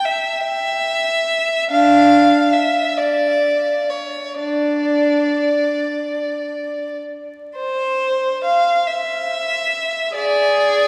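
In a freely flowing, rubato 6/8 that drifts between 30 and 51 BPM in dotted quarters, this lonely, mournful classical fragment for unaccompanied violin in D minor, cut from a longer piece, features a single bowed violin, rich and smooth with a light vibrato and an even tone, moving between D4 and F5 before shifting into a new section at 7.6 seconds, all set within a wet cathedral reverb heard from further back in the room beneath a layer of vinyl crackle.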